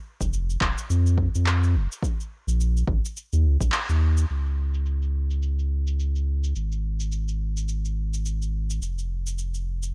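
Sunny and blissful, this sunset chillout excerpt moves at 106 BPM in 4/4 with a swung sixteenth-note feel, carried by a deep, round sine sub bass that sits up front with a fast attack and sustained notes. A punchy, layered electronic kick drives things until 3.7 seconds, where a band accent lands, while electronic cabasa and handclaps, dulled by low-pass filtering and re-recorded in a small room, continue throughout and take on a filter sweep from 4.3 seconds. The sound is dry and gritty, with a cassette-tape character and little reverb.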